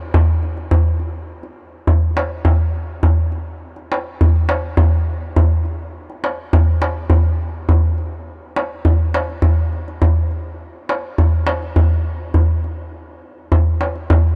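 A crisp, deep metal-shell darbuka plays alone from 0.1 to 14.2 seconds in this hypnotic, melancholic Turkish percussion excerpt at 103 BPM in a straight 4/4, its compressed, saturated sound sitting up front in a small room with light reverb as the passage moves into a new section at 10.0 seconds.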